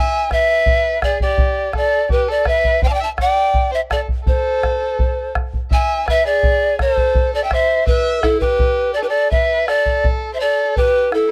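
Andean folk in a wistful, earthy mood, this brief excerpt from a longer piece sets an airy, tongued pan flute with chiff and vibrato up front on the melody, while a single bowed violin played sul tasto adds a warm, woody second line and a deep, dark bombo enters at 0.3 seconds, all captured in a dry, close studio sound with small room ambience and a change of section at 8.6 seconds.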